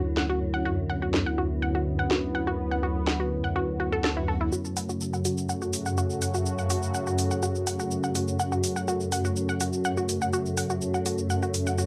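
Heard through the hiss of a home cassette recording with light reverb, this short cut from a longer melodic techno track feels dark and cinematic in a straight 4/4 metre. A resonant, sawtooth-based pad holds sustained chords throughout with chorus and a filter sweep across the opening 4.5 seconds, shifting from Dadd9 to F#m, while a swarming, warbling drone sits low underneath with a granular, vintage tension. A deep, rumbling detuned saw bass with beating unison voices carries the low end only through the opening 4.5 seconds, where a faint electronic swell appears in the background just before the change. A lush, punchy unison pluck with ring modulation and a noise layer spins arpeggios through analog delay. The layered house kit sits up front, with a cracking, overdriven snare, bright hats and shaker. From 4.5 seconds the track moves into a build-up, with a filter sweep on the arpeggiated pluck.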